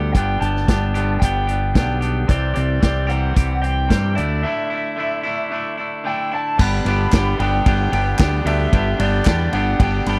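Indie rock with a wistful, jangly mood, this short excerpt pairs a dark, lo-fi lead guitar melody through a small cranked amp with slapback echo over a biting overdriven guitar riff, a growling, round fingered bass and a vintage drum kit with a punchy kick and a rolled-off top, all in a dry, close 1970s-style studio sound with faint mains hum, while a very quiet twangy twelve-string electric guitar enters at 6.6 seconds and crisp group handclaps join from 7.1 to 9.4 seconds after a break.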